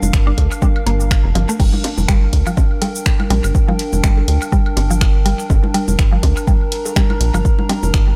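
A rubbery, hollow square bass with tube saturation and sidechain pumping opens this clinical, quirky minimal techno excerpt, alongside a punchy analog drum machine of hi-hat, ride, crash, shaker and finger snaps in dub echo, background congas, cowbell, woodblock and bongos through analog delay, and a warbling, nostalgic lo-fi pad with chorus, reverb and pumping; an up-front, tape-warm electronic kick arrives at 0.1 seconds, and a woody, round mallet-like FM pluck with chorus, pumping and dub echo joins at 0.3 seconds, the swung groove sitting in an echo-heavy digital ambience.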